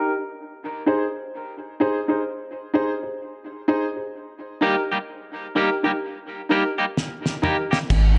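Dub reggae at 64 BPM with a swung, laid-back and spacious feel, this excerpt opens on a break in which a woody, slightly detuned upright piano plays filtered, dub-echoed stabs over Ab moving to Eb beneath a filter sweep; a twangy, clean electric guitar with its own echo joins at 4.6 s, a cloth-damped, thuddy drum kit with a fat snare and dark cymbals plays a fill from 7.0 s, and a round, deep sub bass lands on Ab at 7.9 s, with moderate spring reverb giving the room a 2.5-second tail.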